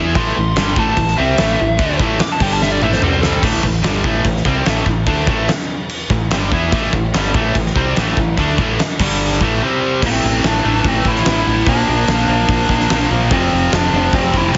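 Three bright, picked rhythm guitars (one overdriven, one distorted, one tight and double-tracked) churn out a menacing hard rock riff in the background over a growling, round fingered bass, while a biting overdriven lead guitar solos from 0.2 seconds to 3.4 seconds and returns at 10.1 seconds above a huge, up-front arena drum kit with a fat snare, a punchy kick, crashes and toms that fills from 2.6 seconds, all squeezed into a heavily compressed, radio-like sound with light small-room reverb in this driving cut from a longer piece.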